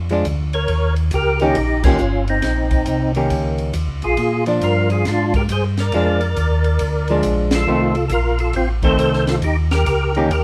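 A round, mellow tonewheel organ opens the bass line through a slow rotary speaker, with audible key click, and a clean, hollow-body archtop guitar and a compact cocktail kit with a punchy kick, high-tuned snare and dusky cymbals join almost at once in a greasy, swinging soul jazz organ trio groove at 137 BPM over Bb7, Eb7 and F7 changes. From 0.5 s a fat, lightly overdriven organ with third-harmonic percussion and chorus vibrato carries the melody. Band accents land at 1.8 and 7.5 seconds in a moderate club reverb, in this fragment cut from a longer piece.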